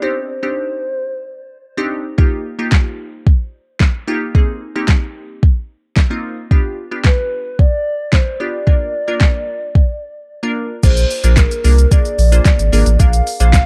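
An up-front, tape-toned electronic R&B drum kit of soft kick, fat snare, smooth hi-hats, shaker, handclaps and crash enters at 2.2 seconds in this summery, euphoric dance-pop piece at 111 BPM, beneath a glassy, crystalline wavetable pluck pumping with sidechain and chorus through the whole passage, a hollow, woody clarinet-like synth lead with vibrato, chorus and dub echo that opens briefly and returns at 7.1 seconds, and a deep, round sub bass with sidechain pumping that arrives at 10.8 seconds after a short break, all over add9 chords that give way to G7 and Bb before a closing Bb7 in a dark, dry production.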